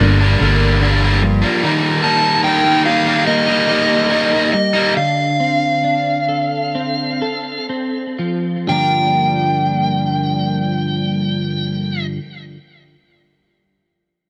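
Post-rock in a brooding, melancholic mood, this excerpt from a longer piece opens with the full band and gradually slows from 1.6 to 8.7 seconds before settling into a second section. A dark, overdriven slide guitar carries the melody up front, its upper-register line trailed by digital delay. Beneath it, a clean, compressed twelve-string electric guitar picks arpeggios through analog chorus and digital delay, while a bright, crunchy overdriven guitar drives a riff until 4.9 seconds. A round, dark hollow-body bass anchors the opening on a low G and drops out at 1.4 seconds, and a very quiet, crystalline glass pad adds an icy, airy haze of detuned sustained chords that ends at 1.6 seconds. The harmony moves from Gm7 through Eb and Dm7 before returning to Gm7, all framed by a light reverb.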